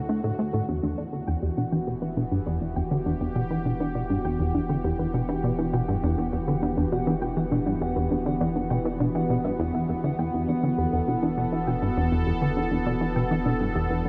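Ambient, sequencer-driven space music in E minor at 101 BPM, this cosmic, hypnotic excerpt from a longer piece opens on a D7 that moves to Em7. A punchy, funky analog bass riff sits up front with tape echo and analog chorus, while a bright, evolving resonant pad holds sustained chords that fade in, its ring-modulated, detuned sawtooth tone under a filter swell. Underneath, a soft, round pluck arpeggio with tape echo and a filter sweep drifts in the background, a deep sine sub bass fades in, and a mellow, tempo-synced gated texture pulses on a single high note, all bathed in a huge ambient reverb with a 9.3 s tail within a dark, warm production.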